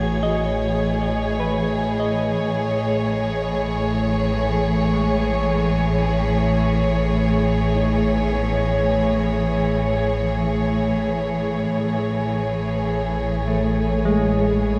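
Weightless and luminous, this slow ambient passage in A lydian drifts at 77 BPM in an unhurried 3/4, cut from a longer piece and resting on a single Amaj7 chord. Up front, a close, intimate string section holds sustained chords with a soft attack, light vibrato and a warm sul tasto bowing tone. Behind it, a dark, clean semi-hollow electric guitar plays fingered arpeggios colored by harmonic tremolo and delay; it drops out at 9.9 seconds and returns at 13.5 seconds. A deep, round sine sub bass sits on a low A beneath the strings, while a very quiet, airy wind-like noise layer hovers high above with a mellow, slow-blooming sustain until it drops out at 11.7 seconds. The whole piece sits in a vast, echoing cathedral space with a long, wet reverb tail.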